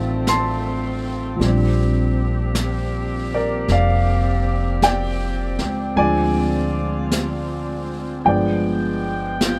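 Late-night and tender, this slow jazz ballad excerpt at 52 BPM swings gently in Bb major, with an up-front concert grand piano offering intimate accompaniment full of long sustain and audible action noise, a mellow, tight saxophone section holding smooth, vibrato-laced chords, a woody, growly pizzicato upright bass, and a distant, roomy brush kit with a high-tuned snare and hi-hat entering at 0.3 seconds, all in a dry setting as the harmony moves from F7 to Bb69 before turning to Dm7b5 and G7b9.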